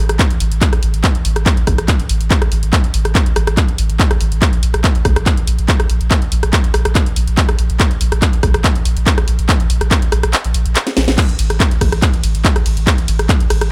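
A dry, up-front mix carries this driving, hypnotic peak-time techno cut at 142 BPM, where a heavy layered electronic kick pounds beneath a cracking snare, handclaps, hi-hat, ride, rim click and crash from the techno kit, while a deep, thick, saturated sub bass with overdrive, sidechain pumping and a low-pass filter holds between A1 and Bb1, until the kick drops out at 10.3 seconds and a drum fill at 10.9 seconds leads it back in at 11.2 seconds.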